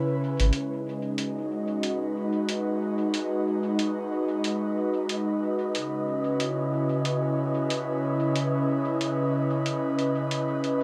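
Ambient dub at 92 BPM in 4/4 with a 16th-note swing, set in G# minor, with a meditative, spacious mood in this piece cut from a longer work. A soft, breathy pad with a chorus effect holds sustained chords throughout, sitting up front as the harmony moves from C#m7 to G#m7 at 0.5 seconds and back to C#m7 at 5.7 seconds. Above it, a dark, wind-like tuned noise texture carries its own reverb and drifts in the background with slow-attack, long-release tones. A round, saturated sub bass sounds only briefly on a deep G#1 near the start, and a muffled, pitched-down electronic hi-hat with a compressed, sampler-style character enters at 0.4 seconds and continues to the end. The mix is echo-heavy with light reverb, giving the whole a hazy, open sense of space.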